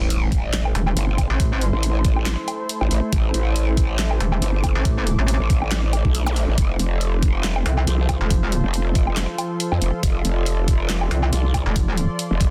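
The rhythm sits in a half-time 4/4 groove at 139 BPM with a 55% swing on the sixteenths, giving this heavy, chaotic wobble dubstep cut from a longer piece its lurching weight in A minor, tuned to A4 = 435 Hz. Two up-front basses dominate: a growling, formant-filtered growl bass with overdrive and chorus runs from the start, and a metallic FM wobble bass, also overdriven and chorused, joins at 0.8 s, both saturated and aggressive in the low register. A dubstep kit of huge snare, bright hats, handclaps and woodblock comes in at 0.1 s, and a knocking, tape-warm electronic kick follows at 0.3 s, both treated with studio reverb. Above them a lush detuned supersaw pad holds sustained chords that pump against the sidechain through a low-pass filter, moving from Am to F at 6.6 s, while a mellow, ethereal airy pad with ensemble chorus and its own reverb drifts high in the background from 1.0 s. 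A very quiet electronic impact opens the passage and a brief zap flickers at 6.3 s, all inside a dense, heavily limited modern master with little reverb overall.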